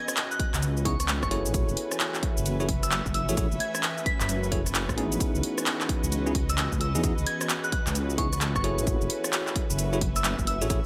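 Late-night and skippy, this excerpt of swung two-step UK garage at 131 BPM moves between C#m9 and F#m9 over a deep, wobbling chorused bass, a punchy overdriven electronic kick and a layered, overdriven house kit of handclaps, hi-hat, rim click and shaker, while bell-like tine electric piano stabs with digital delay enter at 0.9 s, a soft, warbling FM synth bell carries the high melody, a woody string section pumps beneath, and a very quiet, ethereal detuned pad sustains in light digital ambience.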